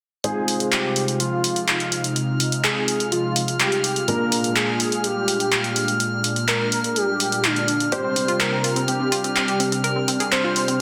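A straight 4/4 pulse at 125 BPM from an up-front, layered big-room drum kit of handclaps and hi-hat drives this bittersweet, emotional progressive house excerpt, where a thick, bold unison lead with vibrato carries the melody through dub echo over lush, warbling pad chords moving from Fm7 to Bb7 to Csus2, short boxy stabs from a dark baby grand piano, a glassy drifting-overtone texture entering at 1.2 s, and a bright, round analog pluck arpeggio joining at 7.9 s, all set in a wet recital-hall reverb and a dense, heavily limited modern master.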